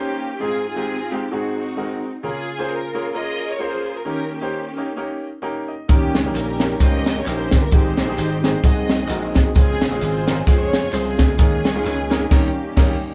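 A band playing live in one room is caught in moderate studio reverb, with a rounded top end, on this jubilant, uplifting uptempo gospel passage cut from a longer piece, moving at 131 BPM in a swung 4/4 in Ab major. A dark, lush string section carries the melody with expressive vibrato from the start, while a clear concert grand piano with deep bass and short sustain accompanies over chords such as Ab6, Ab7 and Db6. After a piano fill from 5.2 seconds, the band enters at 5.9 seconds: a crisp fusion drum kit, polished and up front with a high-tuned snare and punchy kick, comes in together with a bright, amped slap bass. A percussive tonewheel organ holds sustained chords in the background, lightly overdriven with chorus vibrato, key click and a stopped rotary speaker, as very quiet tambourine, tube shaker and group handclaps add texture. The harmony moves through Abmaj7, Dbmaj7 and Eb7sus4 before a band accent on Eb7 at 12.3 seconds.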